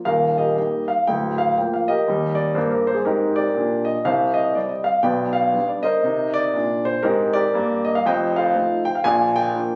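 Stride jazz at 120 BPM in 4/4, swung on the eighths in Eb major, with a playful, swinging mood. A warm grand piano plays solo and up front from 0.1 to 9.8 seconds, ranging from D1 to Ab5 through changes from Eb and Bb/D to Cm7, F7 and Bb. Captured on a phone in the room, the sound carries moderate club reverb, and the clip is cut from a longer piece.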